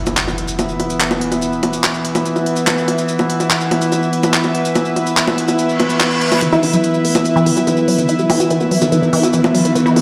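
Driving and psychedelic, this short 144 BPM psychedelic trance excerpt opens with an impact over a resonant, overtone-sweeping sawtooth drone holding sustained E chords up front with chorus and its own reverb, while a dark, floating studio string section bowed sul tasto hovers above and a crisp, tape-warm electronic garage kit of bongos, handclaps and hi-hat drives along with grainy, mellow maracas in the background. A reverse cymbal rises at 5.7 seconds, and at 6.4 seconds a punchy, detuned unison sawtooth pluck riff enters through cassette tape and tape echo, its filter sweep and moving notch adding bite as the build-up and riser carry to the end. The whole mix sits in a lush hall reverb, sounding as if played on a big system in a bare stone room.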